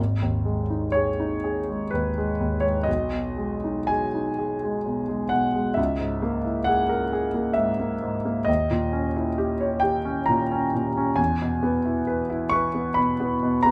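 Closely miked with light reverb, this brief fragment of a wistful, mournful romantic nocturne in G# minor features a solo concert grand piano, intimate and up front with deep bass and audible action noise, moving in a rubato 3/4 at 55-68 BPM from a high G#5 through G#m/B, A#m7b5/C# and D#7b9 to an E chord at 11.2 seconds.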